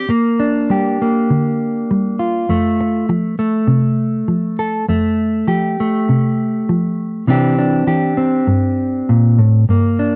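A mellow, clean electric guitar plays alone from the first moment, its dark, fingered tone sitting up front in a dry, close room with a 1970s studio character. This highlife excerpt has a warm, joyful mood and a straight feel in four, moving from Gm7 to Fadd9 at 2.5 seconds and on to Cadd9 at 7.3 seconds.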